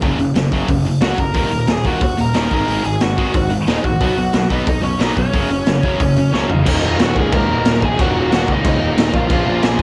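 This raw home cassette recording sounds dry and close, with a gritty, saturated garage drum kit pushed up front in a small, pumping room. It is an aggressive punk rock fragment in Eb minor at 181 BPM in a straight 4/4, with a boomy kick, a medium-tuned snare, hi-hat, toms and crash, all with a rolled-off top. Behind the drums, a distorted electric guitar and an overdriven electric guitar pick bright riffs over a growly fuzz bass, moving through Gb, Ebm, B and Gb5. A high-gain lead guitar with a warm, distorted tone enters at 1.0 s and carries the melody between Db4 and Bb5. A drum fill at 6.3 s leads into a new section where the distorted guitar drops away and a very quiet, double-tracked cranked stack guitar joins at 6.6 s, as the chords shift from Ebm to Bbm before the cut.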